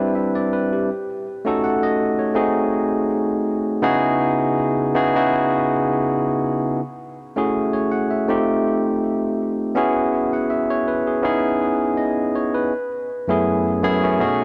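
Set at an easy 4/4 pace with a light swing on the sixteenths, this short soul excerpt feels smooth and lush from its opening moment. A barky tine electric piano carries the whole piece alone from 0.0 to 14.4 s, ranging from F#2 up to F#5. Its tone is bright, clean and direct, sitting up front in the mix with a touch of tape echo trailing behind it. The harmony moves through rich extended chords, opening on Cmaj9 and passing through G#7b9, C#m11 and F9 before settling on F#m11 near the close. A light reverb gives the room a gentle sense of space around the instrument, and the passage, cut from a longer piece, plays as one continuous section.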